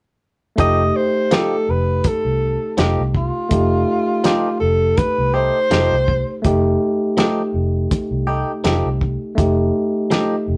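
Recorded live in one room with a moderate studio reverb, this swaggering, soulful straight-eighth soul blues excerpt sets a breathy, intimate tenor saxophone melody with scooped notes and vibrato, heard from 0.6 to 6.4 s, over an F9 chord, with a barky overdriven tine electric piano accompaniment, twangy clean electric guitar stabs, a round, foam-muted fingered electric bass and a cloth-damped, thuddy drum kit with a fat snare and tight kick.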